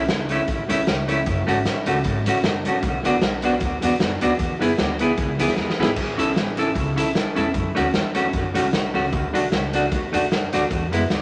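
Bouncy and joyful, this short ska excerpt at 153 BPM in A major swings lightly as an up-front clean electric guitar with dub echo picks out chords over a woody, growly pizzicato upright bass and a punchy, dark-toned garage drum kit, also dub-echoed, whose fill at 5.6 seconds turns the loop back around, all set in a wet studio reverb.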